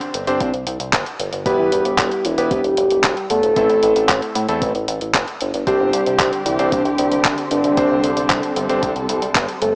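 A dry, gritty recording with a small-speaker sound and light digital ambience carries this playful, danceable Italo disco excerpt in C major at 114 BPM, moving through Csus2, Em and Am. A round, sub-octave synth lead with chorus, phaser and tape echo carries the melody over warm electric grand piano stabs and a glossy, nasal chorused synth bass, while an up-front 12-bit drum machine supplies handclaps and hi-hat above a thumpy electronic kick. At 5.7 seconds a dark, lush studio string section enters with sustained chords, bowed with vibrato and portamento.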